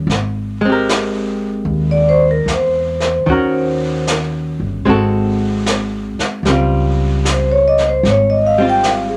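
Jazz ballad at 76 BPM in swung 4/4, wistful and intimate, with a dark, clean archtop guitar comping through chords like Abmaj9 and Ebm7, a woody pizzicato upright bass and a brushed vintage kit with a rolled-off top. From 1.9 s, a close-miked vibraphone takes the melody with a full, ringing tone and slow motor vibrato, sitting up front. A moderate studio reverb adds a touch of space to this short slice of a longer piece, which moves through Ab7b9 to Dbmaj7#11.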